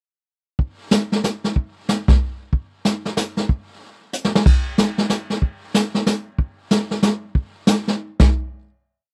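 Swinging and playful, this short jazz piece is carried by a vintage brush drum kit alone, moving briskly at 186 BPM in 3/4 with a lilting swung feel. The acoustic kit sits up front in a dry, close, small-room sound, with brushes sweeping across a medium-tuned snare alongside dark cymbals, hi-hat and a punchy kick, all under a rolled-off, mid-forward tone. A quick drum fill arrives at 4.1 seconds, and the kit plays through to 8.3 seconds before a final hit closes the piece.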